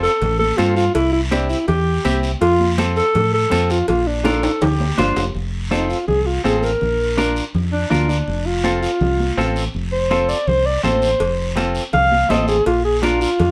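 A festive, sunny cumbia opens with a breathy alto saxophone carrying the melody, joined at once by a bright, clean semi-hollow electric guitar playing picked accompaniment, a round, punchy fingered electric bass, and a raspy guiro that sounds distant, as if in a large room. High-tuned congas played with soft hands sit in the background, while cowbell and timbales add a ringing metal-shell accent from close and dry. A drum fill at 4.2 seconds leads into the saxophone solo, where the cowbell and timbales drop out before returning at 11.2 seconds. The saxophone stays up front, mellow with light vibrato and a smooth top in a pop style, over the dark, direct bass and the compressed, hollow-body guitar. Moderate studio reverb lends the mix a modest sense of space, and the passage is cut from a longer piece.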